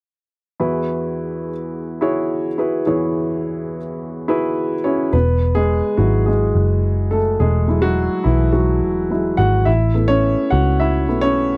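Piano-driven pop in E major at 106 BPM in a straight 4/4, with a warm, uplifting mood. A woody, intimate upright piano with audible action noise sits up front from the start, opening on an Eadd9 before a dark, round, foam-muted picked electric bass joins at 5.1 seconds as the piano moves into a solo, shifting to Asus2 at 9.7 seconds. The dry, close, 1970s-style studio sound keeps both instruments present and natural in this short cut from a longer piece.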